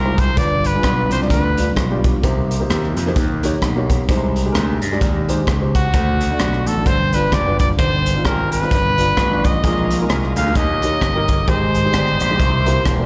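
Heard as a live gig through the venue's PA with recital hall reverb, this excerpt of solemn, fervent uptempo gospel swings at 130 BPM in C minor, with a crisp acoustic kit of hi-hat, punchy kick and rim click and a gritty, overdriven electric slap bass up front. A warm baby grand piano with long sustain and audible action noise comps throughout, while a forceful, clear, vintage jazz trumpet with light vibrato and scooped notes carries the melody, dropping out at 1.7 seconds and returning at 5.7, both with slapback echo. At 9.6 seconds a very quiet, shouting tonewheel organ with key click and slow rotary speaker adds bright, lightly overdriven sustained chords over changes moving from G7 and Cm7 through Bb7sus4 to C7.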